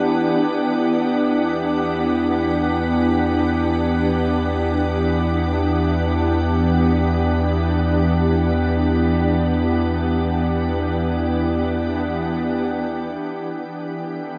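Drenched in a lush hall reverb with a 3.2-second decay, this dreamy, serene ambient passage in E minor drifts in free time, tuned to A4 = 442 Hz, and is cut from a longer piece. Up front, a soft, pure organ-like pad sustains slow-blooming chords on Em9, its detuned sine and triangle tones thickened by ensemble chorus and tinged with ring modulation, while a deep, round sub bass holds E2 beneath it. At 13.2 seconds the bass drops away and the pad alone shifts to Em11, lingering calmly until 14.4 seconds.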